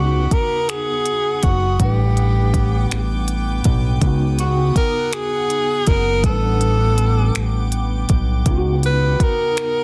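A slow six-eight R&B groove at 54 BPM, this short cut from a longer piece has a sensual, warm mood, with a smooth, electronic drum kit of soft kick, crisp hi-hat and finger snaps entering at 0.3 s, its snare given a touch of soft clipping. A fat, saturated analog bass sits up front, mixing sawtooth, square and sine tones with a wave-folded, detuned thickness and a filter sweep, and it drops out at 9.3 s. Over the harmony, which alternates between Db9sus4 and A9sus4, a worn tine electric piano, slightly out of tune, plays the accompaniment through an ensemble chorus and plate reverb. Higher up, an icy glass pad holds crystalline, airy chords with a slow attack, ring-modulated shimmer and a long release. The breathy tenor saxophone carries the melody in a jazz style, with vibrato, scooped notes and a soft attack, framed by slapback echo and plate reverb. The mix sits in light reverb with a dense, heavily limited modern master.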